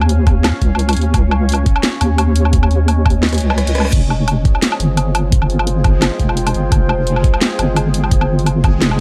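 Half-time drum and bass with a heavy, tense mood, built on a deep, wobbling square-and-sine bass up front, a knocking layered electronic kick that drops out at 3.2 seconds for a drum fill, a kit with a cracking snare, bright hats, rim click, woodblock and crash, a moody sawtooth pad with chorus and sidechain pumping, a brief electronic reverse cymbal, and a dreamy, granular backwards texture entering at 4.5 seconds in the background, all in a dark, dry production.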